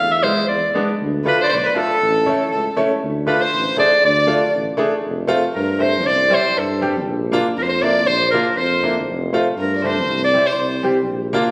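A punchy, forceful clarinet leads this festive, soulful klezmer excerpt, its bright jazz-style melody sitting up front yet carrying a roomy, distant edge. It moves at 119 BPM in a straight 2/4, opening in D dorian sharp4 over Dm and A chords before turning to F major at 5.0 s, where the harmony moves through F, C and Bb. A vintage tuba enters with the clarinet at 0.0 s, anchoring the bass with scooped notes; both instruments sing with vibrato. A brilliant, woody upright piano supplies polished accompaniment close in the mix. From 1.2 s a single bowed violin adds a floating second line, played sul tasto with a soft attack and a smooth, pure top. The whole ensemble sits in a recital hall, with a 1.6-second reverb adding a wet, spacious glow.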